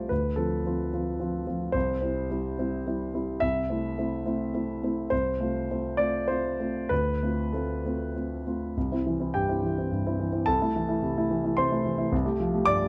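Hopeful and tender, this short excerpt of neoclassical minimalist piano in C major drifts with a rubato feel in 3/4 at roughly 94-111 BPM, a solo concert grand with a dark, mellow tone and deep bass sitting up front through close, detailed microphones and light reverb, moving through Dm7, C, Am/C and F/C before a second section from 8.8 seconds settles on Fadd9/C at 12.1 seconds.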